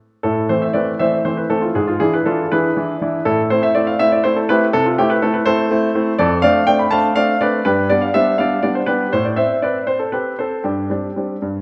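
A cheerful, graceful classical-period piano sonatina in A minor, cut from a longer piece, unfolds at 81 BPM in 6/8 with rubato, its clear, polished baby grand playing solo from 0.2 to 11.6 seconds across a range from F2 to B5, sitting up front in a reverberant church or concert-hall space while moving from Am through E7/G#, Dm7/F and G to close on Gsus4.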